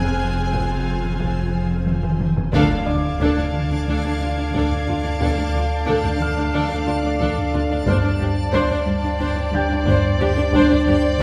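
A wet concert-hall reverb wraps this eerie, mysterious suspense cue, cut from a longer film score at 90 BPM in 4/4. Hushed sul tasto strings carry it: a clear violin melody over warm second violins and violas, woody cellos with a riff and a bass line, and dark double basses, joined by a deep sine sub-bass drone, a reversed, granular swelling texture with its own reverb, a very quiet dark baby grand piano, and high violins that stop at 7.5 s. Very quiet, band-limited taiko enter at 0.5 s, and after their fill a band accent lands at 2.5 s, where a mellow French horn section brings in sustained chords and a huge, dark impact sounds as the harmony moves from Fm to Dm before it settles on Gsus4.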